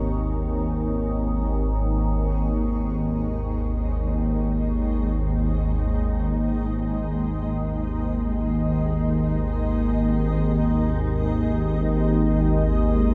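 In free time, this cavernous, dark ambient drone fragment rests on an up-front, detuned organ-like drone with ensemble chorus, joined from the start by a cloudy, blurred, mellow granular cloud pad with shimmer reverb, while a very quiet, ringing quartz singing bowl sounds pure and slowly beating in a boxy small room until 2.3 seconds, after which the pad fades in further and a filter sweep passes over the drone inside a huge ambient reverb.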